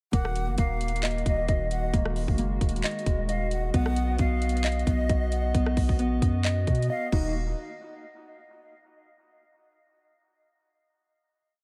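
Trap hip hop in Eb minor at 133 BPM with a half-time feel, dark and menacing, built as a short loop that moves from Ebm to B and back before a break at 6.9 seconds and a final hit from 7.3 seconds. An up-front trap kit with a hard-clipped kick, metallic hats with fast rolls, handclaps, rim clicks and crash carries 12-bit sampler grit, while a deep sine 808 holds long sub notes with pitch slides under a clean, fingered electric guitar arpeggio in quarters with vibrato and dub echo. A hollow, detuned, chorused pad sustains the chords, and a breathy jazz flute adds a sparse, looped counter-melody soaked in dub echo, all set in light digital ambience with an echo-heavy mix.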